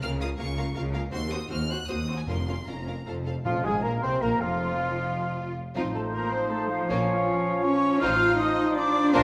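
Classical and dramatic, this urgent, restless fragment of a fast romantic symphonic movement in Bb minor races at 158 BPM in a rubato 3/4, with lush bowed violins carrying the focused melody over a second violin line, background violas, close cellos and clear double basses. Soft-mallet timpani sound from 2.3 to 4.0 seconds, and tight, vintage trombone chords enter at 3.4 seconds. From 3.5 seconds a crisp, pure flute, a quiet oboe, a distant clarinet, a mellow bassoon, dark French horns and trumpet stabs join in, all in a moderate scoring-stage reverb.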